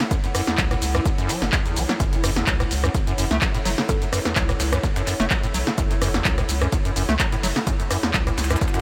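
This short acid house excerpt opens at once on a squelchy, resonant square-wave acid bass riff soaked in lush chorus, cassette tape grit and tape echo. It sits over a punchy analog drum machine of handclaps, hi-hat, rim click, shaker and snare, set up front with a short room on the snare, clap and hats. A blurred granular cloud pad hovers above in sidechain pumping and its own reverb, while a very quiet, tape-warm breakbeat kit of hi-hat, shaker and snare and an up-front electronic kick join at 0.1 seconds. From 0.6 seconds a thick, saturated sub bass pumps beneath, and a woody, round FM pluck with chorus and phaser appears only briefly around 3.9 seconds. The gritty, driving groove runs at 127 BPM in F# minor with a light swing on the sixteenths, resting on an F#m7 chord throughout, before an electronic swell appears in the background at 8.7 seconds.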